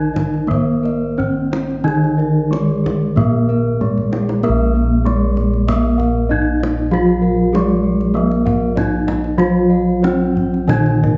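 Javanese gamelan in Bb slendro at 95 BPM, serene and shimmering, with uneven beats in 4/4, cut from a longer piece. A bronze metallophone carries the up-front melody with a ringing, vintage tone and paired tuning that creates shimmering beats, while a second metallophone accompanies below it, round bossed gongs sound the bass, and a higher metallophone and mellow, padded gongs in the background play arpeggios. A deep kendang enters at 0.2 seconds and plays a fill from 4.0 to 4.4 seconds that leads into a new section, all set in a dark, warm production with a moderate recital-hall reverb.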